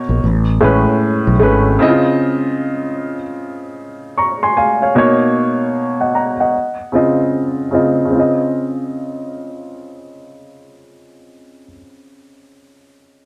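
A woody, intimate upright piano opens this smooth R&B passage, cut from a longer piece, at a relaxed 76 BPM in Db major with a swung sixteenth-note feel, its audible action noise up front and a filter sweep shaping its low-passed tone through the first 8.1 seconds. A growly fretless electric bass, treated with lush chorus, appears only briefly from 0.1 to 1.8 seconds under an Amaj9 chord, after which the piano carries on alone through Dbmaj9, Cbmaj9 and back to Dbmaj9 harmonies until 13.3 seconds. A moderate studio reverb gives the warm sound a natural sense of space.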